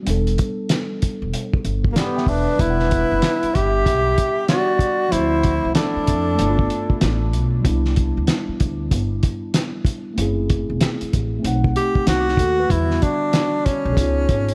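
Jazz-hop at 95 BPM in E minor, this nocturnal, cool excerpt swings gently over a mellow tine electric piano, a woody, thumpy upright bass and a cloth-damped drum kit that sounds muffled and gritty, with a fat snare and tight kick sitting up front. At 1.9 seconds a dark, whispered tenor saxophone with dub echo takes the melody, joined by a hollow, distant flute on a second line until 7.3 seconds, and the sax returns at 11.8 seconds. The echo-heavy mix carries light studio reverb through extended jazz chords such as Em9, Cmaj9 and B7b9.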